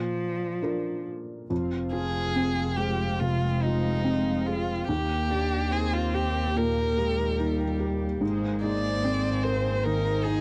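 A slow, rubato 4/4 pulse, hovering around 67-75 BPM, carries this brief, intimate and hopeful neoclassical piece for piano and strings, taken from a longer work. A felt-muted upright piano opens with a soft, mellow accompaniment, its action noise audible, while a clear, focused bowed cello traces a second line alongside it. At 1.5 seconds a bowed double bass enters with a warm, expressive low line full of vibrato and portamento, joined by a brassy, vintage analog pad holding sustained chords with chorus in the background. A rich solo violin takes the melody from 1.9 seconds, up front, with a soft attack, vibrato and gliding portamento. The harmony moves from Bb to Fm, Eb and finally Abadd9, all captured in a dry, close 1970s-style studio sound with light reverb.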